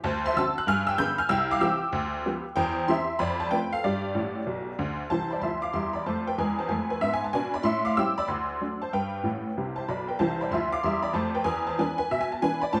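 Playful and exuberant, this short stride jazz passage, cut from a longer piece, features a lone honky-tonk upright piano with a detuned, jangly, vintage tone, placed up front and spanning from deep bass to high treble. It swings in 4/4, moving through bright major-key changes and a turn through E7 and Am7 in its second section after 5.1 seconds, with piano fills at 4.2 and 9.2 seconds. A moderate echo-chamber reverb gives the keys a roomy, old-time halo.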